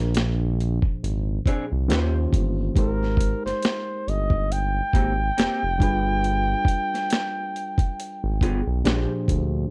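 R&B with a neo-soul lean, this soulful excerpt moves at 69 BPM in 4/4 with a gentle swing on the sixteenths, cut from a longer piece. A mellow flugelhorn carries the melody up front in a jazz style, its light vibrato and scooped notes trailed by a slapback echo, and it sounds from the start until 8.9 seconds. Beneath it, an overdriven reed electric piano supplies reedy, barky accompaniment through a combo amp, while a smooth synth bass with a fast attack holds sustained low notes up front. The boom bap sampler-style drum kit is compressed and pitched down, with a thumpy kick, a high-tuned snare and hi-hat that carry a large-room character, while an electric guitar through a small old amp enters at 1.5 seconds with a slightly broken-up, picked, lo-fi second line. The harmony drifts through rich extended chords such as Bb9, Eb13, Abmaj9 and G7b9 before returning to Bb13, all captured in a dry, close 1970s-style studio sound with little reverb.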